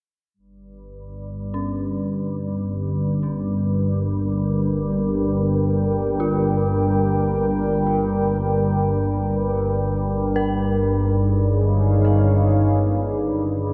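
In free time, this ominous, unsettling dark ambient drone fragment opens with a calm, organ-like sine drone at 0.9 seconds, soon joined up front by a deep, detuned sawtooth pad with a sub octave holding sustained chords, while an eerie, inharmonic FM bell fades in from the background with chorused, delayed arpeggios, set inside a moderate plate reverb and an echo-heavy, muffled mix as the harmony moves from Gm to C#add9/G at 9.3 seconds.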